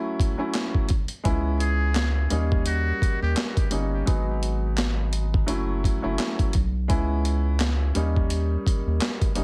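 Boom-bap hip-hop at 85 BPM in C# minor, this reflective, gritty excerpt opens on a woody upright piano, joined at 0.2 seconds by a compressed sampler-style kit with a thumpy kick, high-tuned snare, handclaps and hi-hat, re-recorded in a large room and set up front. A round, deep analog bass enters at 1.3 seconds, and a buzzy, breathy trumpet with a metal mute sings a brief jazz-style solo line with light vibrato, plate reverb and delay from 1.6 to 3.4 seconds. Swung sixteenths and moody seventh chords sit in a dry, heavily compressed radio-style sound.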